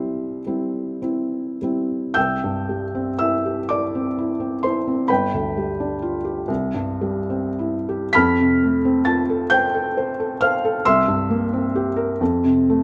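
Romantic classical nocturne in C major for a solo felt-muted upright piano, tender and serene at a slow, rubato 33-46 BPM in 12/8, its soft, mellow, intimate tone sitting up front in close, detailed microphones within a moderate recital hall reverb, spanning G1 to B6 as the harmony moves from C through G7, F and C7 before landing on F at 12.2 seconds in this short cut from a longer piece.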